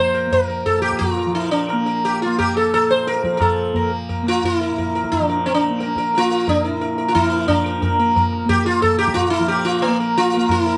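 In a straight 3/4 at 177 BPM that speeds up throughout, this Hindustani classical fragment, cut from a longer piece, unfolds in raga Yaman on Bb with a devotional, meditative mood. The sitar carries the melody up front, its bright, round, plectrum-plucked tone ringing with sympathetic strings and a buzzing shimmer as it moves between Bb3 and C5. Beneath it, a softly plucked, warm tanpura holds a drone from Bb2 to Bb3, sitting lower in the mix. A low-tuned tabla with a ringing, small-room quality keeps time at a similarly modest level, entering at 0.1 s and stopping at 10.6 s. A new section arrives at 7.5 s, and light reverb gives the whole fragment a gentle sense of space.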